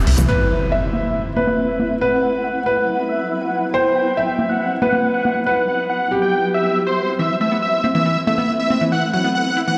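Dry, overdriven electronic hi-hat and congas drive a straight uplifting trance groove until 8.8 seconds, while a huge, detuned supersaw lead carries the euphoric yet bittersweet melody with a bright, airy edge, a sweeping filter and dub echo. An intimate concert grand piano with audible action noise sits up front on a second line until 7.1 seconds, and a round, warbling analog pluck adds brief arpeggios with vintage sampler grit and chorus, returning at 7.2 seconds. An electronic impact marks the opening over chords moving from Amadd9 through Esus2, C and B, all bathed in a long stone-room reverb.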